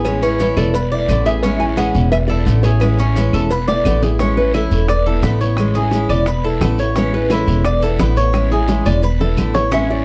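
Relaxed and danceable, this clip from a longer Cuban son and guajira piece moves at 174 BPM in a straight 4/4, sitting in A major and rocking between Amaj7 and E7sus4 throughout. An up-front upright bass with gut strings lays down a thumpy pizzicato foundation, while a bright, picked steel-string acoustic guitar and a metallic Cuban tres with double strings fill the middle, the tres playing arpeggios. A fingerpicked nylon-string guitar carries the melody with a classical touch, audible finger squeak and an analog delay, and it takes a solo from 4.2 seconds. Behind them sit round, low-tuned cowbell and bongos, woody claves, a raspy, band-limited guiro and grainy, saturated maracas, with a drum fill arriving at 3.7 seconds and another later on. The production is dark and warm, finished with light reverb.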